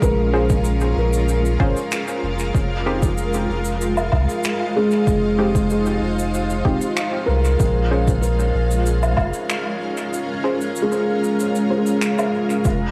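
Over a punchy electronic kick at 95 BPM with natural cabasa, finger snaps and woodblock steeped in dub echo, this hazy, meditative ambient dub excerpt moves between Bbm7 and Fm7 as a deep, round sub bass sits up front, a bright, blurred granular cloud pad holds sustained chords, a thick-felt upright piano with audible action noise spins mellow arpeggios through cassette tape and analog delay, a muted, gritty filtered chord stab echoes in the background from 0.3 seconds, and a glassy harmonics texture drifts in only at 12.7 seconds, all within a small-room home cassette recording with a faint mains hum.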